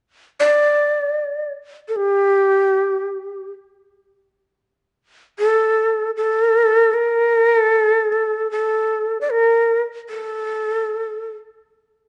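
A breathy, bright bamboo shakuhachi enters at 0.4 s and plays solo in free time until 11.3 s, a still, austere fragment of Japanese traditional chamber music, close-miked and up front, its unsteady tone marked by vibrato, tongued attacks and chiff, all set in a moderate recital-hall reverb and heard through worn, warbling cassette tape whose pitch drifts and whose top end is dulled, cut from a longer piece.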